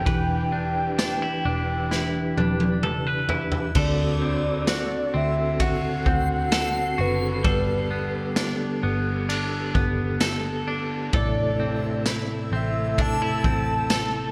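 Bright 1980s-style digital production and a moderate plate reverb give this cut from a longer dream pop piece a blissful, ethereal air. A raw garage drum kit sits up front, with a boomy kick, a medium-tuned snare and a rolled-off top, all gritty and saturated, soaked in gated reverb and a pumping small-room sound; a drum fill from 1.9 to 3.8 seconds leads into the second section. Beneath it, a dark, foam-muted picked electric bass plays round, amped low notes, while a mellow, flute-like tonewheel organ holds sustained chords through chorus vibrato and a slow rotary speaker. A clean, compressed semi-hollow guitar plays arpeggios up front through lush chorus and digital delay, and a soft octave-layered synth lead carries the melody with a full, detuned tone, vibrato, chorus and delay. At 3.4 seconds a reversed, granular texture begins swelling high in the background, dreamy in its own reverb and delay, as the harmony moves from Em7 through D7 and Gadd9 to Am.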